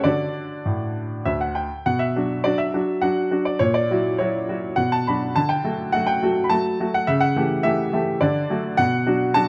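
A bright, worn baby grand piano sits up front with a short sustain, playing an elegant, cheerful classical-period sonatina in a rubato three-four, ranging from D2 to B5 as this fragment of a longer piece shifts into a new section at 1.9 seconds, all set in light reverb within a dark, warm production.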